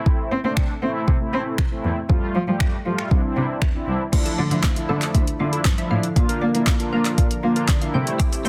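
A dense, heavily limited modern mix sits in digital ambience, giving this short dance-pop excerpt a confident yet bittersweet air at 118 BPM in a straight 4/4, in D minor. Mellow, brassy synth brass opens the accompaniment with detuned sawtooth and square-wave tones, a sub octave, chorus and sidechain pumping. A smooth R&B drum kit sits up front almost at once, its electronic, overdriven sound pairing a soft kick and a snare with soft clipping against finger snaps, handclaps, hi-hat, shaker and crash cymbal. A muted cello carries the bass, bowed by one player con sordino with a veiled, dark tone, vibrato and its own sidechain pumping. At 4.1 seconds a shimmering, retro pulse-width pad adds sustained chords in the background, joined by a glassy, crystalline wavetable pluck playing arpeggios through chorus, phaser and dub echo. The chords move from C6 through Fadd9 and Cadd9 to Dmadd9 and Bb, and a clean, picked twelve-string electric guitar slips in quietly at 8.2 seconds with a riff on C4.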